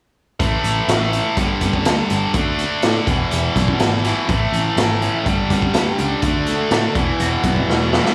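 Swaggering and driving, this classic rock cut moves at 124 BPM in a straight 4/4, with a tight, bright distorted guitar riff up front from 0.4 seconds over a direct, picked electric bass and a raw garage drum kit whose boomy kick, gritty saturation and rolled-off top pump in a small room. A crunchy overdriven second guitar with phaser joins in the background at 4.3 seconds, as the riff cycles through A5, G5, D5 and E before settling on Eadd9. A drum fill closes the passage at 7.7 seconds, all set in light studio reverb.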